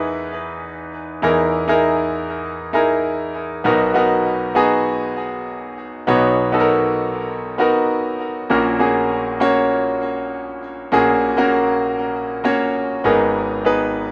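A straight 4/4 pulse at 99 BPM carries this hopeful, anthemic pop fragment in B major, cut from a longer piece. A solo concert grand piano, clear and up front with a deep bass and short sustain, touched with digital delay, moves through Emaj7, Bmaj7, F#/A# and G#madd9 across its 14.1 seconds. A small room's moderate reverb frames the piano in a rough home demo mix.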